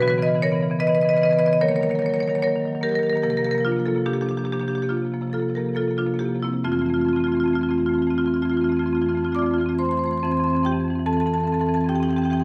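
Loosely rubato in 4/4, this brief contemporary classical excerpt for solo marimba played with medium hard mallets flows in a playful mood, its woody, bright, airy padauk tone sitting up front in a wet recital-hall reverb as the harmony moves from Dbm7 through Ebm7 and C9sus4 to Fmaj7 at 6.7 seconds.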